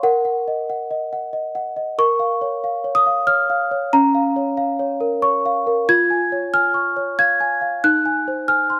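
Close, detailed microphones and a moderate scoring-stage reverb frame a worn, bell-like celesta that sits up front, its soft felt hammers and slightly out-of-tune voice carrying a tender, dreamy classical lullaby in Bb minor at 92 BPM in a gentle 3/4, played solo from 0.0 to 8.8 seconds across a range from Db4 to Ab6, as the harmony moves from Ebm/Bb through Bbm and Db/F to an Ab7/Eb chord at 7.8 seconds in this fragment of a longer piece.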